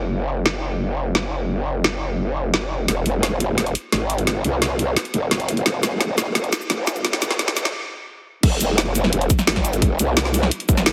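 Dark and aggressive, this short cut from a longer piece of technical drum and bass drives at 173 BPM in F phrygian, tuned slightly sharp to A4 = 441 Hz. A growling, saturated bass sits up front from the very start, its sine-based tone wobbling through a formant filter with a fast attack, sustained notes between F1 and C2, and chorus, overdrive and sidechain pumping. From 0.5 seconds an electronic drum kit joins with a woody snare, bright hi-hats, cabasa and crash cymbal, each filtered with a low-pass, and the kit carries a drum fill through a build-up from 2.9 seconds under a filter sweep. After a brief stop, the drop lands at 8.4 seconds, where a tight, layered electronic kick enters and stands a little louder than the other parts. The whole mix has a heavily compressed, radio-like sound with light reverb, multiband compression and a high-pass filter, and the drums carry the character of having been re-recorded in a small room.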